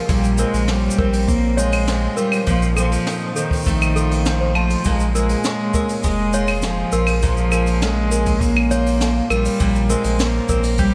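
An intimate, autumnal folktronica piece opens with a nasal, up-front cello melody, bowed sul tasto with an airy tone and light vibrato, over shimmering, woody arpeggios from an octave-doubled twelve-string acoustic guitar, both trailed by a diffuse ambient delay. A round sine sub bass and a boomy kick come in almost at once, with a brushed kit of high-tuned snare, hi-hat, shaker and claves. From 0.4 seconds a clanky, slightly out-of-tune toy piano adds a bell-like second line with its own delay, all set in a dreamy mix soaked in moderate church reverb over Bbm13, F7/Bb and Bbm7 chords.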